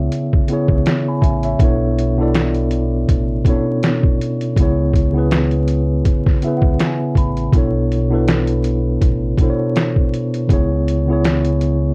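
Worn, warbling old tape with vinyl crackle, pitch drift and light reverb gives this melancholic, nostalgic lo-fi hip hop excerpt a hazy, faded sound, with a gentle swing on the sixteenths. A mellow tine electric piano sits up front through its built-in speakers, clean and touched by cassette tape, moving between C#m7 and Bm11. A dark, round fingered electric bass with tube saturation sits beneath, while a compressed, pitched-down sampler-style trip hop kit, muffled and up front, drives the groove with a thumpy kick, a medium-tuned snare and hi-hat.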